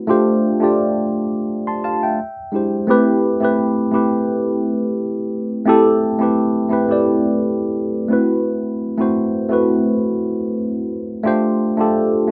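R&B at a relaxed 86 BPM in 4/4, this sultry, late-night excerpt in A minor runs just over 12 seconds and is cut from a longer piece. A lone tine electric piano carries everything, sounding worn and slightly out of tune yet clean and direct, sitting up front with a phaser coloring its tone. Its lightly swung sixteenth-note feel moves through G7sus4, E7alt and a long stretch on Am9 before shifting to Am69 and returning to G7sus4 at 11.2 seconds. A brief fill from 11.9 to 12.3 seconds closes the passage. Light reverb and a rough home demo mix give the recording an intimate, unpolished character.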